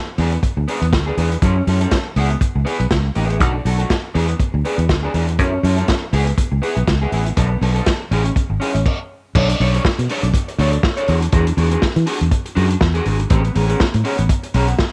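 A swung sixteenth-note groove in 4/4 drives this danceable disco cut, taken from a longer piece. The vintage drum kit sits up front with a punchy kick, a medium-tuned snare, a hi-hat and crash cymbals that sound dark and muffled, its top rolled off for a lo-fi character. A fingered electric bass, also up front, carries a round, foam-muted tone that blends direct and amped sound. An electric guitar at the edge of break-up plays fingered accompaniment at a lower level, slightly gritty and treated with a subtle chorus. The opening section cycles through seventh chords such as E7, F#m7 and C#m7 before a brief stop at 8.9 seconds. At 9.3 seconds a second section opens on richer ninth chords, moving from Bm9 through E9 to Amaj9, all inside a small room ambience.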